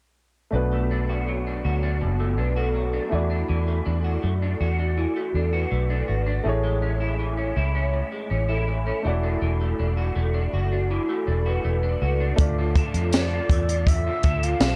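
A small room with cassette tape colouring and a faint mains hum frames this hazy, nostalgic indie bedroom-pop fragment at 81 BPM, where a twangy, slightly broken-up electric guitar with ensemble chorus and vibrato, a woody upright piano on cassette and a round, foam-muted fingered bass move through Bm7, E9sus4 and Amaj7. A ringing soft-mallet vibraphone with lush chorus and analog delay sits in the background from 2.0 seconds, and at 12.4 seconds a dark, punchy cocktail drum kit with 12-bit sampler grit arrives up front as the harmony turns to Dmadd9. An airy, end-blown shakuhachi with chiff and vibrato takes the melody beside a jingly tambourine from 13.1 seconds.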